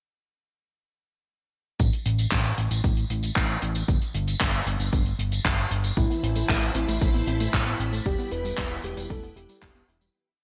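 A four-on-the-floor electronic kick and a dry, damped 70s drum kit of handclaps, closed hi-hat and tambourine in gated reverb drive this melodramatic, nostalgic italo disco piece at 115 BPM from 1.8 seconds, alongside a fat, detuned analog bass playing driving eighth notes; at 6.0 seconds a lush vintage string machine pad, a round analog pluck arpeggio in the background and a soft, dark, octave-layered synth lead with vibrato and hook phrases arrive in a bright 1980s-style digital production before the fade-out from 7.4 seconds.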